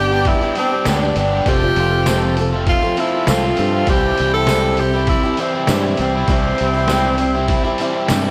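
Folk rock with a heartland rock lean, this hopeful piece moves at 100 BPM in a straight 4/4 in C major, cut from a longer work, with chords shifting from G to F and then to C at 3.9 seconds. A clear tenor saxophone carries the melody up front with vibrato and slapback echo, over a boxy, swing-style picked acoustic guitar with audible finger squeak, a crunchy, double-tracked overdriven guitar riff and a round fingered electric bass. A gritty, pitched-down sampler-style drum kit with a thumpy kick enters at 0.3 seconds, a jingly tambourine sits in the background from 0.9 seconds, and a lush hall reverb gives the mix a big arena sound.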